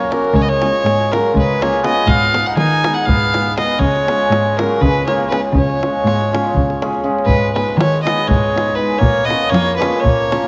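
A bowed fiddle with a gut-string, reedy tone and a smooth top opens this festive Balkan wedding-band piece, sitting up front alongside a mellow classical-style trumpet, a shimmering hammered dulcimer and a bowed cello, with the davul joining at 0.1 seconds. The music moves in a brisk, straight 7/8, and the fiddle carries a virtuosic melody while the trumpet, distant and roomy with a light vibrato, sings a lower second line. Beneath them the dulcimer rings out bright, acoustic accompaniment, and the cello anchors the bass with a dark, woody sul tasto sound and vibrato, heard close. The davul keeps the pulse tight and dry. At 7.3 seconds the tune moves into a new section as the harmony shifts from D-flat major toward A-flat minor and B-flat minor, all set in a moderate scoring-stage reverb and coloured by the worn, warbly pitch drift of old cassette tape, in a fragment cut from a longer piece.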